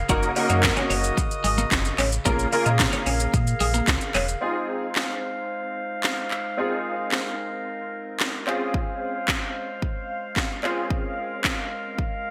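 Dance-pop at 111 BPM in a straight 4/4, this short cut from a longer piece feels bittersweet yet confident, moving through Gb6, Bbm7, Fm7 and Dbmaj7 chords. A punchy, layered house drum kit drives it up front with handclaps, cracking snare, metallic hi-hats and shaker, its tape-tinged sound wrapped in gated reverb. For the opening 4.4 seconds a deep, sine-like sub bass with an octave layer anchors the low end while a bright, twangy twelve-string electric guitar picks out a clean, compressed riff through lush chorus. A clear, polished baby grand piano plays accompaniment throughout, thickened by ensemble chorus, and a mellow woodwind section holds soft-edged, smooth sustained chords. The piano, bass and woodwinds share a sidechain pumping effect, and light digital ambience gives the whole a glossy 1980s-style sheen.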